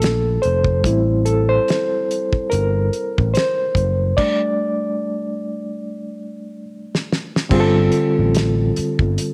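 Late-night and soulful, this swung neo-soul R&B excerpt features a reedy, lightly overdriven electric piano with fast tremolo soloing from the start over a growly, punchy fretless electric bass with ensemble chorus and a damped 70s drum kit with a fat snare, tight kick and dark cymbals, with a stop at 4.2 seconds and a drum fill from 5.8 seconds leading into a new section at 7.5 seconds, set in a light studio reverb.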